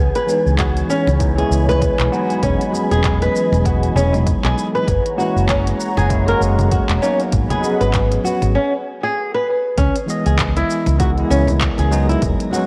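A worn, warbling cassette-tape sheen and light digital ambience colour this short cut from a longer organic downtempo piece, which is earthy and mystical in mood with a swung 4/4 feel. Up front, a fingerpicked flamenco guitar plays arpeggios through tape echo beside a woody, round fretless bass that pumps against the sidechain. A bell-like tine electric piano adds clean accompaniment, also pumping and echoed, while a mellow, detuned sawtooth pad holds chorused chords until 8.5 seconds. The rhythm comes from a punchy, overdriven electronic kick, an afro-pop kit of handclaps, smooth hi-hat and shaker, and very quiet, close congas. In the background, a breathy, wind-like tuned noise layer drifts in its own reverb, and a break at 8.6 seconds leads into a new section at 9.8 seconds, where the harmony returns to C#m7.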